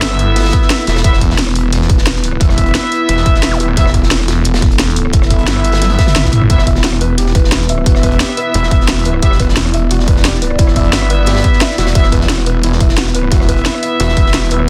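Tense and futuristic, this dark technical drum and bass excerpt at 176 BPM in E minor drives a snarling, growling distorted saw bass up front and a punchy layered electronic kick alongside a cracking drum and bass kit, a gritty, rolled-off breakbeat kit in the background, moody pumping analog pad chords with chorus and phaser, bright vintage brass stabs with tape echo, a brief background zap at 3.5 seconds, a drum fill at 5.8 seconds, and a soft, felt-muted upright piano arpeggiating from 6.5 seconds, all under light small-room reverb and a dense, heavily limited master.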